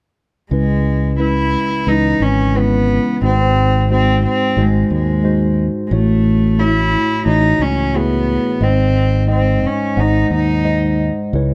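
An acoustic folk-pop ballad in C# minor, intimate and melancholic, moving at 89 BPM in a straight 4/4 through C#m7, G#7, F#m7/A and G#. A single bowed cello carries the melody from 0.5 to 11.0 seconds, pure and floating with a soft attack and a sul tasto tone, sitting up front yet sounding distant, over a clean tine electric piano heard through its built-in speakers. A punchy, direct fingered electric bass holds down the low end until 11.5 seconds, and the dry sound of this short cut, tuned to A4 = 438 Hz, keeps it close and warm.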